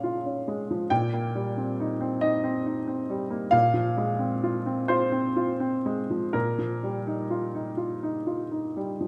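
A moderate concert-hall reverb, about 1.8 seconds long, surrounds an up-front, intimate upright piano, and the audible action noise of the instrument stays close in the ear. This short fragment of neoclassical minimalist piano runs just over 9 seconds in 6/8, played rubato with a melancholic, reflective mood. The solo piano has a woody, natural tone with short sustain, and its notes span from Bb2 up to G5. The harmony moves slowly over a Bb bass, from Bbm7 through Cm/Bb and Fm/Bb, and settles on Ebadd9/Bb at 6.3 seconds. The result is a contemplative passage cut from a longer piece.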